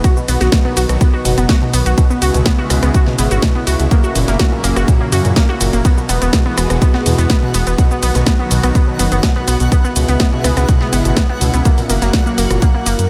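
A punchy, tape-warm electronic kick sits up front in this expansive, uplifting progressive house excerpt at 124 BPM in B major, driving a straight 4/4 pulse from the first beat. A house drum kit with a cracking snare, hi-hat, ride cymbal, rim click and shaker fills out the groove, its percussion, hats and cymbals pumping against the kick, while a round, deep analog bass enters at 0.3 seconds with a dark, detuned sawtooth-and-sine tone. Above them, a glassy wavetable pluck spins crystalline, ring-modulated arpeggios with a filter sweep, chorus, delay and a cassette-tape grain, and a lush, thick unison pad holds bright sustained chords through chorus and phaser, both breathing with sidechain pumping. The harmony cycles through B, C#m7, F#7 and Eadd9 before returning to B. At 7.5 seconds a twinkling granular texture drifts in far in the background, adding an octave-up shimmer and sparkling FM tones bathed in its own reverb. 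A light reverb lends the mix a sense of space, with both drum parts carrying the sound of a large room.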